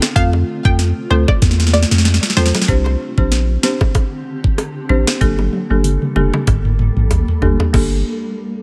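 An overdriven island pop drum kit drives this bouncy, sultry dancehall excerpt at 95 BPM in G minor, its knocking kick, sharp snare and metallic hats sitting up front with a small-room character, and it adds fills at 1.4 and 5.2 seconds. A punchy sub bass with a pitch-drop attack and pure sine body anchors the low end beside it, following chords that move from F to Csus2 to Gmadd9 over a swung sixteenth-note feel. A folk marimba struck with hard mallets supplies woody, rustic accompaniment through a low-pass filter, while tight, high-tuned bongos played with hard hands add close, dry percussion. A round, full-bodied analog pluck with chorus and digital delay carries the melody only briefly, from 0.2 to 2.5 seconds. Behind it all, a cloudy, evolving granular pad holds sustained chords in the background with built-in reverb and sidechain pumping, as a filter sweep runs from 2.7 to 7.7 seconds.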